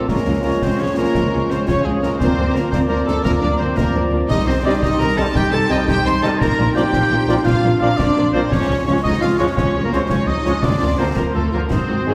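Heard from further back on a scoring stage, the orchestra sits in a wet reverb, while the percussion comes across close and dry. This cinematic, swashbuckling adventure cue rolls along in a straight 12/8, and a symphonic violin section carries the heroic melody with a smooth, even tone and light vibrato. Around it, a soft, expressive second violin line, a lush viola section with portamento, and a warm cor anglais weave supporting lines, joined by a dark solo clarinet and an airy flute ensemble sitting very quietly up high. A focused cello section and a woody double bass section anchor the low end, while tight, shadowy French horns and clear, vintage-toned trombones hold sustained chords moving through Db, Bbadd9/D and Cm. A mellow, distant trumpet adds soft stabs, and concert snare, bass drum and clash cymbals with dark cymbal colour drive the excerpt from 0.1 to 11.9 seconds of this 12.1-second cut from a longer piece.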